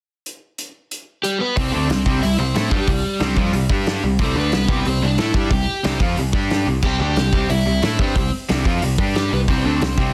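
Energetic, rowdy punk rock at 182 BPM in C major, this excerpt opens at 0.3 seconds with a loose, roomy drum kit of dark cymbals, medium-tuned snare and tight kick, before an up-front overdriven semi-hollow guitar carries the melody through digital delay from 1.2 seconds, and at 1.6 seconds a picked electric bass with a direct, bright tone joins three distorted electric guitars playing background riffs, one of them very quiet and double-tracked, all under light reverb and a dense, heavily limited master.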